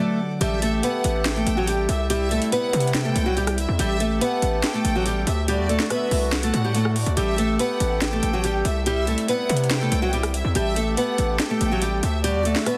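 A bright, fingerpicked nylon-string guitar carries the melody up front with digital delay, opening over reedy accordion chords before a lush, vibrato-rich violin section, a heavy, saturated 808-style bass and a trap kit with a sharp snare, metallic hats and finger snaps enter at 0.4 seconds in this melancholic, brooding half-time trap cut at 142 BPM in A dorian, all dry and densely limited.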